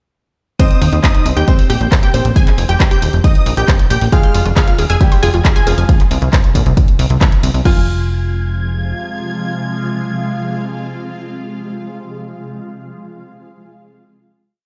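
Euphoric, emotional uplifting trance in F minor at 136 BPM, where a lush, detuned unison pluck carries a repeating riff in octaves over a brilliant, worn grand piano riff, a mellow supersaw stab doubling the anthem an octave higher, a heavy four-on-the-floor kick with programmed claps, hats and crash, and a punchy, galloping sixteenth-note analog bass, with the pluck, stab, bass, hats and crash pumping through a drop that ends at 7.7 s before a shimmering, ethereal pad (entering at 5.2 s) and the leads hold a final Fm chord in a stone room reverb.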